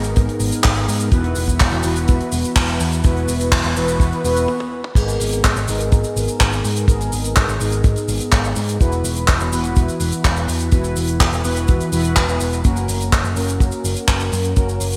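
Danceable and melodramatic, this italo disco excerpt moves at 125 BPM in G# minor, with mellow, brassy sawtooth synth stabs carrying chorus, phaser and delay over a dark, round picked electric bass and a dry, damped 70s drum kit of hi-hat, handclaps, cabasa, toms and crash, its gated reverb giving the hits a clipped snap. A tight, rolled-off kick sits forward of the rest, and a drum fill with a brief stop at 4.5 seconds leads into the second section at 5.0 seconds, where the G#madd9 and Esus2 harmony turns to F# at 12.6 seconds. The bright 1980s-style digital production sets everything in a lush hall reverb.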